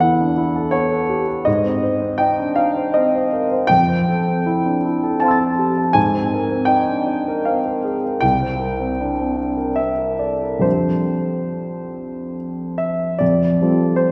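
Luminous and dreamy, this excerpt of impressionist solo piano drifts in 3/4 at a flexible, rubato pace between 68 and 84 BPM, tuned slightly below standard pitch at A4 = 436 Hz. A warm, present grand piano sits up front and spans the keyboard from C2 to A6, its long sustain carrying colorful harmonies that move from Em11 through G#, Fmaj7, Abadd9 and Csus2 before settling on F69 at 10.7 seconds. A wet concert hall reverb, with a 2.4-second decay, surrounds the instrument in the spacious acoustic of a church or concert hall.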